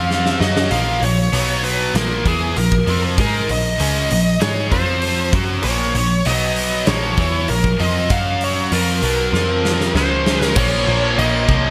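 A menacing, driving hard rock excerpt in Bb minor opens with a high-gain lead guitar carrying the melody over two picked electric rhythm guitars, one a bright, cranked stack tone with overdrive and analog chorus, the other a scooped, distorted high-gain sound sitting in the background. A dark, round overdriven bass with a foam-muted, direct tone anchors the low end, while an up-front acoustic rock kit with a punchy kick, medium-tuned snare, crash and hi-hat enters at 0.1 seconds with a fill, its gated reverb and pumping, bright stone-room ambience giving it a big presence. At 98 BPM in a straight 4/4, the riffs move through Bbm, B5, F5, Gb5 and Db5 before another drum fill from 9.3 to 10.6 seconds leads into a new section. There a very quiet, smooth sawtooth analog pad with detuned, chorused, slow-attack sustained chords joins at 10.6 seconds as the harmony returns to Bbm. The whole excerpt has a bright 1980s-style digital production sheen, set in a moderate plate reverb.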